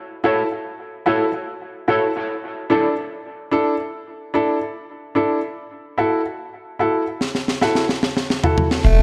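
The woody upright piano carries this spacious, deep dub reggae passage, its intimate stabs and audible action noise trailing a dub echo from 0.2 seconds. A mellow, clean, fingered electric guitar with lush chorus and dub echo adds brief accompaniment at the start. The music sits at a relaxed 73 BPM in F# minor with a swung 16th feel, moving from F#m7 to E7sus4 and back to F#m7. A dry, dark reggae drum kit with a high-tuned snare and tight kick enters with a fill at 7.2 seconds, sitting up front in a moderate echo chamber. At 8.8 seconds, just as the fragment cuts off, a raspy, growling tenor saxophone with vibrato, a round sub bass with a fast attack, and a twangy, slightly broken-up background guitar riff with chorus and echo all arrive.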